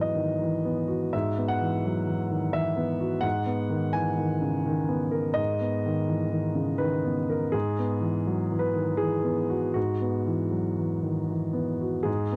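A neoclassical minimalist piano excerpt, intimate and reflective, moving at a rubato 76-86 BPM in 3/4. A concert grand plays alone, warm and natural with a deep bass, sitting up front in a dry, close 1970s-style studio sound. Its chords shift from Eadd9/G# to G#madd9 at 3.2 seconds and return to Eadd9/G# at 7.5 seconds.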